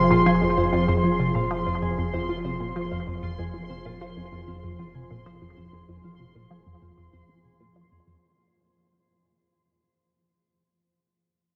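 Hypnotic and cosmic, this fragment of ambient, sequencer-driven space music moves at 96 BPM in a straight 4/4, resting on a single F minor chord throughout. Up front, a juicy, squelchy blip pluck plays a low riff between F2 and F3, colored by phaser, analog chorus and delay, while a filter sweep runs across the synth arpeggio sound. Behind it, a sweeping, airy sawtooth pad holds detuned chords with chorus, and a bubbling stepped-filter texture sits high on C6 with chorus and its own built-in reverb. A round sine sub bass anchors the low end on F1, and a mellow, ringing concert harp picks arpeggios with delay, outlasting the synths until 10.2 s. The harp, the sub bass and the whole piece fade out over the first 8.2 seconds, all bathed in a huge, wet reverb with a 9.0-second tail and the worn, warbling pitch drift of old cassette tape.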